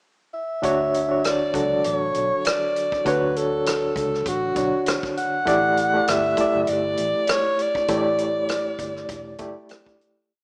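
The alto saxophone opens alone with a pickup, mellow and softly attacked, before the band settles into a lush 1970s-style soul groove at 99 BPM in D major, with a gentle sixteenth-note swing. From 0.6 seconds a barky, reedy electric piano plays rhythmic chords in spread voicings with grace notes, lightly overdriven and pulsing with medium tremolo, sitting up front beside the saxophone. Underneath, a dark, round, foam-muted fingered bass carries a melodic line, while a vintage kit of punchy kick, hi-hat and rim click keeps a smooth mid-tempo feel. The saxophone spins short, vibrato-tinged call phrases in a jazz style over a Dmaj7 that gives way to A7sus4 at 5.5 seconds. The mood is warm and smooth, bathed in a lush hall reverb, though the rough demo mix has a small-speaker sound, and the whole short piece fades out from 7.9 seconds.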